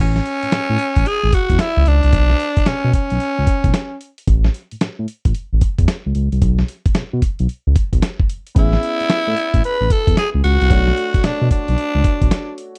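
Bouncy and flirty, this new jack swing excerpt of R&B moves at 112 BPM in A major, its sixteenths pushed into a loose swing. A growling tenor saxophone carries the melody up front, raspy and breathy with light vibrato and a slapback echo, playing from the start to 4.0 seconds and returning at 8.6 seconds. Underneath, a smooth synth bass built from sawtooth and square waves with a touch of ring modulation sits dark and sustained, with a fast attack, until 12.3 seconds. A dusty, compressed sampler-style drum kit of thumpy kick, medium-tuned snare and hi-hat comes in at 0.2 seconds with a gritty, up-front sound. A grand piano with long sustain joins quietly in the background for the last few seconds, as the chords shift from A and Bmadd9 through a brief chordless stretch to Amaj7 and Bm9. The dry, close sound recalls a 1970s studio room, with little reverb on anything.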